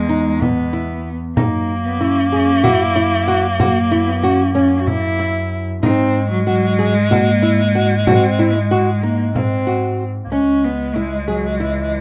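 This restless, urgent stretch of contemporary chamber music opens with a bowed cello carrying the melody in a rich, smooth voice with even vibrato. Beside it, a bright, punchy clarinet plays a forceful, jazz-inflected second line, and a bowed double bass plays sul tasto with a soft attack and a pure, floating tone. Both strings sit up front. A fingerpicked nylon-string guitar joins almost at once with small acoustic arpeggios. A frame drum enters at 0.4 seconds, sounding as if recorded in a small room, and drops out at 9.8 seconds. The music moves in a quick 7/8 at 188 BPM with a straight feel in C# dorian, and its harmony travels from Emaj7 through F#7 and G#7 before settling on C#m at 10.3 seconds, all within a dark, warm production with light reverb.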